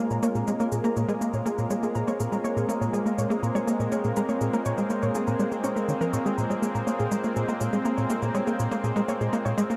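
Ambient, sequencer-driven space music in Bb minor at 122 BPM, cosmic and mysterious, where a tight, punchy sequencer bass riff with ring-modulated sawtooth bite and lush chorus and delay drives beneath a thick, detuned unison pad holding a bright Bbm7 chord up front, while a warbly, dusty, lo-fi pluck spins dark arpeggios through chorus and delay, overdriven analog cabasa and bongos enter at 0.1 seconds with their own delay, and the whole is bathed in a huge, wet ambient reverb with a cassette tape character in this short cut from a longer piece.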